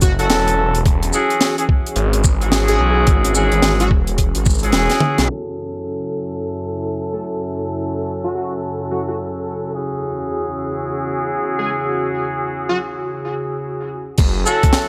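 A swung sixteenth-note glitch hop groove opens this funky, swaggering clip, built on a gritty, pitched-down electronic kick and a dry, tight funk kit with a high-tuned snare, bright cymbals, hi-hat, shaker and toms, while a thick, swirling phased saw bass sits beneath. The kick drops out first, and after a drum fill the kit and bass fall away around 5.3 s for a filter-swept passage carried by a warbling, nostalgic tape-like pad, mellow jazz-style horn stabs with light vibrato, and a punchy, catchy plucky lead dressed in lush chorus and tape echo, before the rhythm section returns briefly at 14.2 s. The whole has the rough character of a hardware recording, with faint mains hum and light studio ambience.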